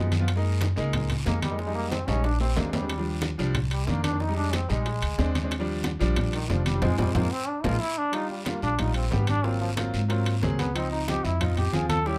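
Afro-Cuban jazz with a sunny, lively drive, this excerpt puts a bright, vintage trombone up front, soloing with light vibrato over a smooth piano that has a deep low end, while a woody pizzicato upright bass sits prominently beneath them. Congas with a bright, thin-skinned tone played with soft hands and ringing metal-shelled timbales stay in the background, joined by a raspy guiro and very quiet, round-toned bongos. Drum fills land at 1.9 and 7.2 seconds, with a band accent from 6.8 seconds, all under a light reverb.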